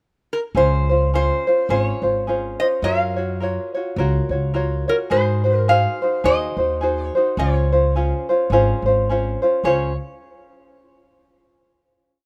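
A metallic, nasal resonator slide guitar, played with fingerpicks, spins a free, wandering melody over this dreamy, languid Hawaiian piece, entering on a brief pickup at 0.3 seconds. Up front beneath it, a light tenor ukulele fingerpicks and strums eighths in open chord shapes, while a woody pizzicato upright bass on steel strings plays a two-feel of roots and fifths through a gently swung cycle of Dbmaj7, Gbmaj7, Ab7 and back to Dbmaj7. The short tune settles onto a final chord at 9.6 seconds, all heard through light reverb in a rough home-demo mix.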